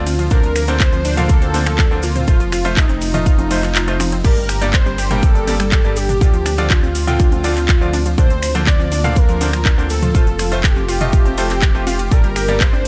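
A velvety synth lead with chorus and tape echo opens this bittersweet, expansive progressive house excerpt in G minor at 122 BPM, joined by a very quiet soft supersaw second line over a breathy, airy pad and a dark, rumbling detuned saw bass that pumps with the sidechain. A house drum kit with metallic hats, snaps, claps and cymbals, very quiet electronic congas and toms and a grainy tube shaker in the background join almost at once, alongside crystalline wavetable pluck arpeggios and brilliant grand piano stabs, both with tape echo and sidechain pumping. A punchy, up-front electronic kick drives the 4/4 pulse through chords moving from Bbadd9/D to F, Gm and Dm7, dropping out briefly at 3.8 seconds before returning at 4.2 seconds in a dry, close mix.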